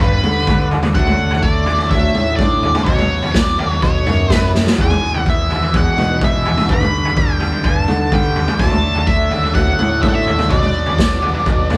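The octave-fuzz lead guitar sits up front with a dark, distorted picked melody, colored by wah, over a trippy, hazy psychedelic rock groove at 126 BPM in straight 4/4. Alongside it, a raw garage drum kit sits up front with a boomy kick, a medium-tuned snare and toms, its saturated, gritty sound rolled off at the top, with a drum fill at 4.5 seconds. A bright, double-tracked fuzz guitar churns out a compressed riff through a phaser in the background, while a close-miked bass clarinet carries the low end in a classical style. A very quiet hand-pumped harmonium breathes reedy, nasal, airy sustained chords through the changes from G and D to Bmadd9, E and Bm. The band plays live in one room with moderate studio reverb, and this 11.8-second cut comes from a longer piece.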